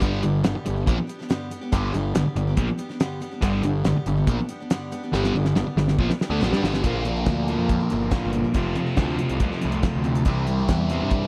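A dry, close 1970s-style studio sound with a small room's reverb frames this confident, swaggering classic rock clip at 141 BPM in a straight 4/4. Up front, a cloth-damped, thuddy drum kit with a fat snare and tight kick drives alongside a fuzzy, overdriven picked bass and a biting overdriven guitar riff treated with phaser. A dark, sludgy distorted guitar and a bright, full-bodied jumbo acoustic guitar with finger squeaks sit in the background, and after a drum fill from 5.1 seconds the harmony shifts from G to Bb at 6.8 seconds, then moves through F and Cadd9.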